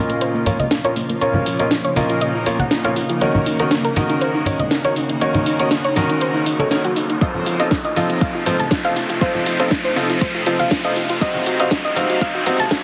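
Drenched in a huge ambient reverb and pressed into a dense, heavily limited master, this dreamy, bittersweet progressive house build-up at 120 BPM in Bb harmonic minor moves through Bbm, Ebm7, F7 and Cdim, with a shimmering, ethereal pad sustaining chords in the background, soft, round pluck arpeggios carrying chorus and delay, and bright, worn concert grand piano stabs under a filter sweep, while an overdriven house kit of hi-hat, shaker and cracking snare plays alongside saturated congas, a riser enters at 1.9 s and a deep, layered electronic kick arrives at 7.2 s.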